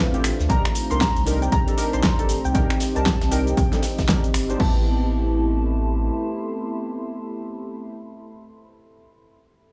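A swung 4/4 groove at 117 BPM drives this short cut from a longer deep house piece in A minor, its mood warm and deep. A punchy, up-front electronic kick and a fat-snared deep house kit with metallic hats, finger snaps, cabasa and crash carry the beat until about 4.7 seconds, while a very quiet acoustic kit adds tight hi-hat and snare underneath. A round sine sub bass sits up front and pumps against the kick, and analog keys play sawtooth stabs through chorus and analog delay over a move from Cm7 to Am7 at 4.6 seconds. A soft, wave-folded pluck carries the high melody with a cassette-tape tint, and two background pads fill the space: one warbling and nostalgic, the other moody with a sub octave, both pumping and colored by built-in reverb. The overall sound is dry and gritty, with a small-room hardware character.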